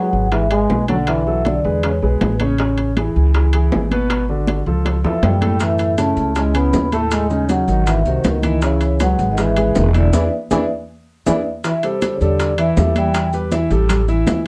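A driving Afro-Cuban jazz groove at 159 BPM in a straight 4/4 opens this sultry cut in C# minor. Woody, thumpy pizzicato upright bass on gut strings sits up front beneath softly played congas with a thick, high-tuned skin and round, low-tuned bongos in the background, plus ringing metal-shell timbales heard close and dry. A smooth grand piano with long sustain, also up front, carries the accompaniment through chords that open on a rootless C#m7 and move through Amaj9, G#7b13 and E7 before settling on A5 and Em. The vibraphone, struck with soft mallets and shimmering with fast motor vibrato, states the melody while a warm trombone with vibrato and scooped notes carries a second line; both drop out briefly and return at 5.0 seconds as a drum fill gets under way, with grainy, mellow maracas joining shortly after. A band accent and a second drum fill lead into a new section at 11.6 seconds, and the dark, lightly reverberant production gives the bongos and maracas a vintage, band-limited character.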